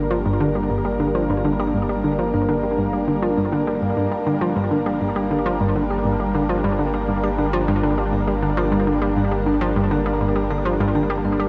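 A nasal, wave-folded analog pluck riff with chorus, tape echo and shimmer reverb sits up front in this cosmic, expansive piece of ambient, sequencer-driven space music at 101 BPM in G minor, carried over an evolving, detuned pad of sustained chords with chorus and shimmer reverb, very quiet metallic vibraphone arpeggios, and a deep, mellow analog bass holding G1 on a Gm chord, all heard within a vast cathedral reverb across this 11.5-second excerpt.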